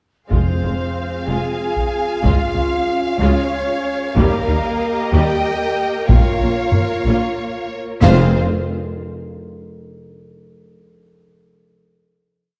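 At 0.3 s a dark, relentless cinematic orchestral theme in F minor and 6/8 at 62 BPM opens with single big taiko strokes from hard sticks and close, dry timpani. A rich, focused violin section carries the melody while an airy flute group and a softer second violin section double it at the octave in the background. Violas drive a rhythmic ostinato, mellow, distant French horns and a lush string section hold sustained chords, and cellos with clear, even double basses anchor the bass through the Fm, Db, Eb and Bbm progression. The taiko stops at 7.0 s, and a timpani stroke marks the final F minor chord at 8.0 s, all in a dark production with moderate scoring-stage reverb.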